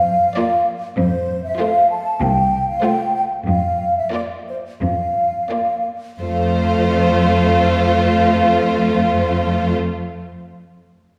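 Flutes and cellos open together at 0.0 s, the large flute ensemble sounding mellow and hollow with an airy, tongued vibrato up front, while the cello section lays down a focused, lush bass line close to the listener. This is a quick, graceful and cheerful classical-period movement for symphony orchestra in F major and 4/4, moving between 83 and 101 BPM with a rubato feel and slowing over its first 6.2 seconds. At 0.4 s the strings fill in: one violin section carries the expressive, vibrato-rich melody, a second violin section holds a bowed supporting line, and the viola section adds smooth, even accompaniment with a clear tone. The harmony rests on F major and Bb over F, and a second section begins at 6.2 s. A scoring-stage reverb in a church or concert hall gives the ensemble a spacious, wet sound, and this short excerpt is cut from a longer piece.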